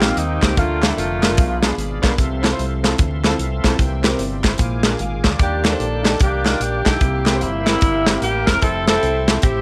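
A smooth, vibrato-laden saxophone section carries the melody up front from 0.0 to 1.7 seconds and again from 5.4 seconds in this reverent, jubilant uptempo gospel excerpt at 149 BPM with a swung feel in F major, as a clear concert grand piano accompanies, a very quiet reedy tonewheel organ with key click and rotary speaker sits alongside a very quiet, warm French horn section on sustained chords, a round, punchy fingered electric bass holds down the low end next to an acoustic drum kit with a tight kick and a medium-tuned snare, and crisp vintage group handclaps sit in the background of a small room with light reverb.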